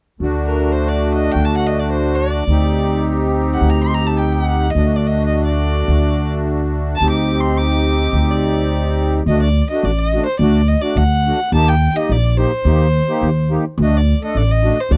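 Klezmer in free time and D phrygian dominant, festive yet bittersweet, this dry, close 1970s-style studio take sets a reedy, sweet accordion with light tremolo tuning over woody pizzicato upright bass on steel strings, both up front from 0.2 s, before a clear, intense bowed violin with light vibrato enters at 0.5 s and carries the melody into a new section at 9.3 s.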